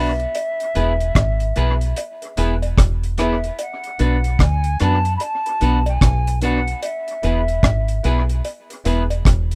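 Serious and laid-back, this short roots reggae excerpt sits at 74 BPM in 4/4 with a swung sixteenth-note feel, moving from E to Bm and back to E. A deep, round dub bass played with the fingers sits up front, its foam-muted, punchy tone paired with a dry, dark drum kit whose tight kick, hi-hat and rim click enter at 0.2 seconds. A clean, picked electric guitar carries the accompaniment through tape echo, while a woody, vintage upright piano adds mellow stabs in the same register. Above them, a pure concert flute with vibrato and a crisp attack plays the melody from a distance, also bathed in tape echo, and falls away at 8.4 seconds. A quiet cowbell joins at 0.4 seconds, its close percussion blending tube shaker and group handclap sounds. The mix is a rough home demo with little reverb, giving the whole groove an intimate, unpolished character.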